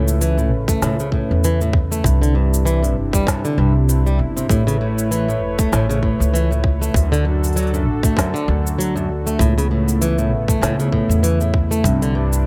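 A tight, up-front electronic kick enters at 0.7 s beneath crisp hi-hats, shaker and a woody snare from an organic electronic kit, setting a lightly swung 16th-note groove at 98 BPM in 4/4 for this delicate, pastoral folktronica excerpt in A mixolydian. Out front, a plugged-in acoustic guitar plays boxy, fingerpicked swing-style arpeggios touched with tape echo, while a thumpy pizzicato upright bass with gut strings anchors the low end. A smooth sawtooth analog pad with a soft attack and chorus sustains chords that move through Aadd9, Cadd9 and D, all set in light reverb.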